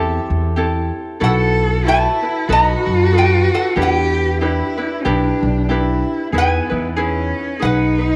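Hawaiian music, relaxed and sunny with a light swing, in this short cut from a longer piece: a metallic, nasal lap resonator guitar carries the melody with fingerpicks and slide, over a fingerpicked ukulele and a woody, growly pizzicato upright bass. A bowed cello enters at 1.2 s as a second line, expressive with vibrato, portamento and a soft attack. A new section begins at 6.3 s, and a wet echo-chamber reverb gives the recording a spacious glow.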